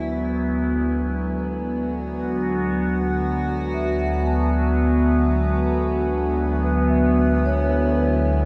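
This ambient excerpt is a serene, peaceful fragment in free time, resting on a single chord inside a cathedral-like reverb with a 6.7-second decay. An evolving wavetable pad sits up front, its bright, morphing unison tone swelling in slowly and holding sustained chords through a phaser and a shimmer reverb. Mellow, airy vibraphone arpeggios played with soft mallets ring out above it, carrying a fast motor vibrato along with tape echo and shimmer, and they gradually fade in across the whole passage. In the background, a glassy, ethereal glass harmonica adds smooth texture under its own shimmer, also fading in from the start. A vintage analog drone joins at 1.2 seconds, its warbling sawtooth and pulse-wave tone thickened with chorus as it slowly fades in beneath the other parts, giving the impression of a moment lifted from a longer piece.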